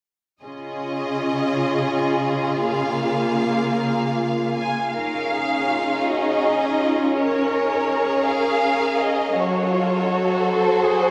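Cinematic, emotional film score for strings in Db major, moving and uplifting at a rubato 55 BPM in 6/8: clear, focused second violins and violas with lush vibrato share the opening with expressive, soft-attacked cellos below, before a smooth-topped, up-front melody violin section enters at 4.5 seconds over a harmony that shifts from Dbadd9 and Bbm7/Db to a closing Gbm, all bathed in a cathedral reverb whose long tail marks this excerpt cut from a longer piece.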